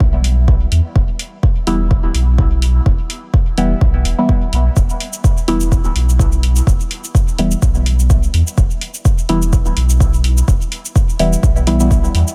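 Deep and hypnotic, this dub techno passage, cut from a longer piece, moves at 126 BPM in E minor with a 16th-note swing that loosens the pulse, all resting on a single Em chord. A pure sine sub bass and an electronic kick drum sit up front from the start, the bass clean, smooth and dark with tube saturation and sidechain pumping, the kick deep, layered and tape-warm, re-recorded in a small room. An electronic hi-hat joins almost at once, quieter and likewise layered and roomy. From 1.7 seconds a soft, mellow chord stab blending triangle, sawtooth and sine tones adds fast-attack, decaying hits shaped by a filter sweep and drenched in chorus, phaser, sidechain pumping and dub echo. A grainy, bright cabasa, close and dry, arrives at 4.8 seconds, and digital ambience surrounds the whole mix.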